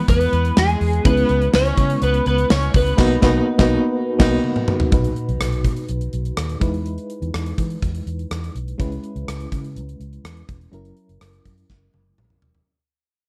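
This is a nostalgic, glossy slice of 1980s-style pop in a straight four, cut from a longer piece and wrapped in light reverb. A clean, twangy twelve-string electric guitar carries the melody over the first 4.2 seconds, thickened by ensemble chorus, while a single bowed viola with vibrato adds a focused second line below it through tape echo. An FM electric piano with tremolo supplies mellow, decaying chords throughout, with a faint noise layer under its fast attack, and a foam-muted fingered bass sits up front with a dark, round tone. The gated drum kit booms in a big room, with a punchy kick, a medium-tuned snare, bright cymbals, rim clicks, tambourine and toms. The band hits accents together before a drum fill at 4.4 seconds leads into a second section, where the chords move from Emaj7 through C#m7 to F#7 as the music fades out and a final fill closes the clip.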